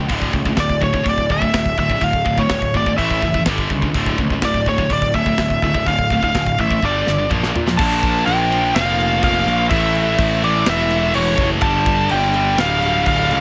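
A double-tracked, high-gain guitar riff and a growly fuzz-picked electric bass open this epic, aggressive heavy metal excerpt in D harmonic minor at 125 BPM, with a polished studio drum kit's punchy kick, hi-hat, snare, toms and crash joining at once and a dark, nasal lead guitar with a parked wah, overdrive and delay carrying the melody from 0.6 seconds, until a drum fill at 6.8 seconds drops the band into a half-time feel at 7.8 seconds, all captured dry, with the guitars and bass up front.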